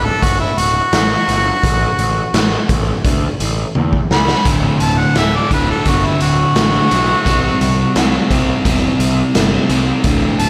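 Blues rock in the power-trio mould with a southern rock edge, this driving, gritty excerpt moves at 86 BPM in a straight 4/4, tuned slightly below standard pitch. A clear, close-miked harmonica carries the melody from the start, its overdriven tone marked by light vibrato and scooped notes, while a fuzz-laden picked electric bass growls underneath with a bright, amped bite. The raw garage drum kit comes in at 0.2 seconds, up front and saturated with a punchy kick, medium-tuned snare, hi-hat, splash cymbal and toms, its rolled-off top giving it a dark, smooth character. After a drum fill around 3.8 seconds, a crunchy, double-tracked overdriven guitar riff enters at 4.4 seconds. The harmony moves from D through a brief chordless stretch back to D and on to a C5 power chord, all set in a lush hall reverb that lends a big arena sound.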